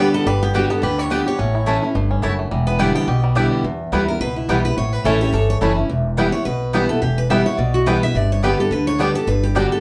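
Heard from further back in a reverberant studio room, this rustic, driving bluegrass excerpt swings at 213 BPM in E dorian, moving through G, A and Em chords. An up-front auditorium guitar with finger squeak carries the accompaniment, while a full-bodied, jumbo-toned picked guitar and a twangy, fingerpicked banjo share the melody, a mandolin adds woody double-string stabs, and a thumpy pizzicato upright bass anchors the low end. A biting, focused fiddle slips in briefly in the background at 4.9 s with a light-vibrato second line.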